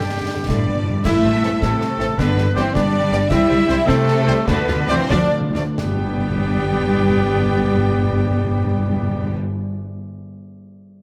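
In a straight 6/8 at 85-108 BPM that slows partway through, this triumphant, soaring fragment of heroic adventure film score in G major carries a lush, vibrato-rich violin melody in the background over a second violin line, an airy flute section, a distant solo oboe, very quiet violas with portamento, warm French horn chords, mellow trombones, smooth-topped trumpet stabs and a bright, ringing harp playing arpeggios, while timpani fills open the piece; cellos, double basses and concert snare, bass drum and clash cymbals join at 0.5 seconds, the drums dropping out at 5.9 seconds, inside a moderate concert-hall reverb.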